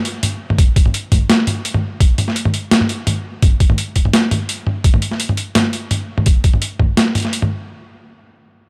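A dry, gritty hardware recording with transformer saturation and a digital ambience frames this cinematic, heavy half-time drum and bass cut at 169 BPM with a slight swing on the 16ths, where a pitched-down, compressed sampler-style boom bap kit of hi-hat, high-tuned snare and toms sits up front from 0.1 s, joined at 0.6 s by a thumpy electronic kick that stops at 6.9 s, both parts overdriven and placed in a small room ambience.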